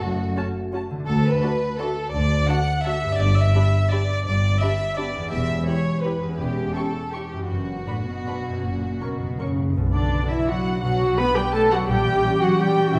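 A wet recital-hall reverb surrounds this short cut from a longer orchestral ballroom waltz in B minor, moving in 3/4 at roughly 151-184 BPM with a rubato feel and a sweeping, bittersweet mood. Muted strings carry most of it. One section of chamber violins, veiled and distant, plays a second line, while another, con sordino with a smooth top, carries the melody. Beneath them, close, dark violas play the accompaniment, and symphonic cellos and double basses form a bowed bass. A mellow concert harp rings out arpeggios throughout, and a loose French horn section holds soft-edged sustained chords in the background until 9.5 s. Timpani struck with medium mallets add a dry fill from 8.6 s before the passage turns to a new section at 9.8 s, where the harmony, having moved from F#m through D, G, Em, C#dim/E and Bm/F# to F#, settles on Bm and then an A#dim7.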